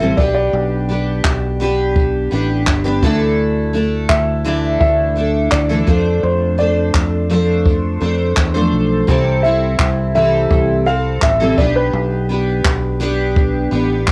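A straight 4/4 groove from a brushed jazz kit with a boomy kick and handclaps, entering at 0.2 s in a small, natural-sounding room, carries this carefree, easy-going acoustic pop excerpt, where a round, dark fingered electric bass and a full-bodied, double-tracked picked dreadnought guitar sit up front beneath a mellow, woody upright piano melody, the piano and drums tinted by cassette tape, the whole home recording lightly reverberant as the chords move from G/B through Dsus2, F6 and C6 back to G/B.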